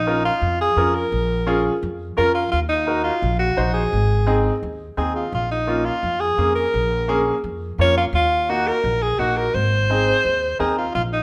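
A large studio room with moderate reverb frames this fiery, driving Latin passage, cut from a longer piece and built on a straight four-beat feel. A bright, punchy alto saxophone carries the solo melody up front with vibrato and pop-style phrasing, while a woody pizzicato upright bass with steel strings anchors the low end. A clear, intimate upright piano supplies polished accompaniment with long sustain and audible action noise, over a cycle of Bbm, Ebm and Ab chords.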